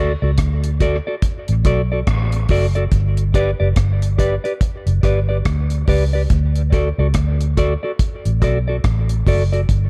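Dub reggae at 71 BPM in D major, this hazy, spacious excerpt sways on a 16th-note swing as the harmony moves from D to G and back to D at 6.3 seconds. A round, foam-muted fingered electric bass sits up front and carries the low end, while a dry acoustic drum kit entering at 0.4 seconds offers a tight kick, rim click and hi-hat with a rolled-off top. A mellow, clean electric guitar plays fingered accompaniment soaked in dub echo, all within a dark studio reverb.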